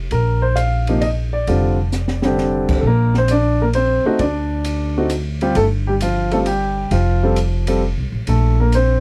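A swung 3/4 lilt at 132 BPM drives this relaxed, playful jazz piano trio excerpt in B-flat major, with a woody, plucked upright bass on steel strings sitting up front. An intimate concert grand carries the melody over colorful B-flat chords, its deep bass, long sustain and audible action noise giving it a natural presence, while an acoustic drum kit with dark cymbals, a high-tuned snare and a boomy kick sits further back and drops in a short fill at 1.9 seconds. The sound is dry and close, like a 1970s studio recording.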